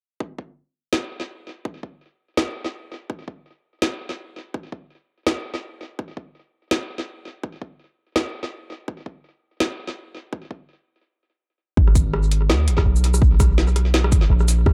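The rhythm sits in a half-time drum and bass groove at 166 BPM in 4/4, with a light swing on the sixteenths, in G# minor. This heavy, tense excerpt opens at 0.2 seconds on an up-front electronic kick, re-recorded in a small room, and at 0.9 seconds a layered electronic kit joins with a woody snare, metallic hi-hats, rim clicks and shaker, all soaked in tape echo. A stop at 11.0 seconds pulls the groove out for a breath before the drop lands at 11.8 seconds. There a long, deep 808-style bass enters between G#1 and D#2, its sine tone striking fast and then decaying beneath the returning drums. The mix carries light reverb and leans heavily on echo, keeping the drums and bass close and forceful.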